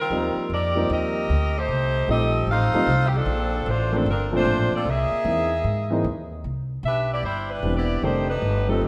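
Big band swing at 152 BPM in 4/4 with a swung feel, this energetic, brassy passage is cut from a longer piece. A bright saxophone section with a smooth top and light vibrato carries the melody up front, while a woody pizzicato upright bass anchors the low end and an intimate baby grand piano with audible action noise supplies warm accompaniment over rich extended chords. The sound sits in a moderate scoring-stage reverb, and a new section begins at 6.4 s.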